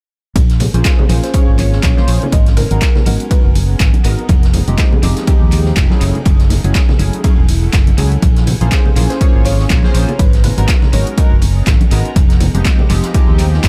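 Deep and late-night, this swung deep house excerpt rides an overdriven, punchy electronic kick up front, with an overdriven analog drum machine adding handclaps and hi-hat and a dark, round fingered electric bass pumping beneath through minor ninth chords. A glossy, chorused polysynth plays stabs under a filter sweep that runs from 0.4 seconds onward, while a very quiet, cloudy granular pad drifts in at 1.7 seconds. Further back sit bright congas touched with tape echo, a gritty vintage drum kit with ride cymbal and snare, and a soft, detuned pluck melody that surfaces twice with lush chorus and cassette tape colour, all in a small, echo-heavy room.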